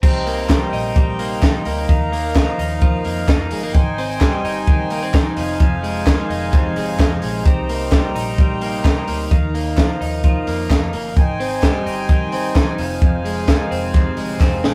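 A rough rehearsal-room recording with light reverb gives this short cut from a longer piece of jangly indie pop a bright, nostalgic glow. A twelve-string electric guitar rings out clean, picked arpeggios, its compressed tone bathed in spring reverb, while a reedy accordion holds sustained chords with a slow-beating shimmer. Underneath, a vintage fingered electric bass sounds dark, amped and foam-muted, with a round low end. The compact cocktail drum kit sits up front with a high-tuned snare, punchy kick and rolled-off top, and it closes with a drum fill at 14.4 seconds. Distant group handclaps from a large, hollow-sounding room hover in the background from 0.5 seconds, and the harmony cycles twice through Cm7, Ebsus2, Abmaj7 and Fm7.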